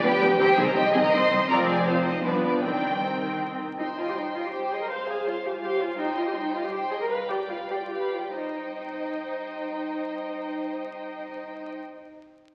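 Dramatic and stormy, this quick classical-period movement for string orchestra moves in a supple three-beat rubato, heard here as a short cut from a longer piece. A distant, vibrato-laden first violin section carries the melody high above a warm, up-front second violin line, while lush, up-front violas fill in the accompaniment. The cellos anchor the bass with expressive portamento and a close, full-bodied tone, joined by a remote, smooth double bass section that drops out at 3.6 seconds. Minor-key harmony circles through tonic, subdominant and dominant-seventh chords, and the music slows from 5.4 to 8.4 seconds before settling back on the home chord. A generous scoring-stage reverb gives the ensemble a spacious bloom, and the crackle of a very old 78 rpm record lends the sound an aged, dusty patina.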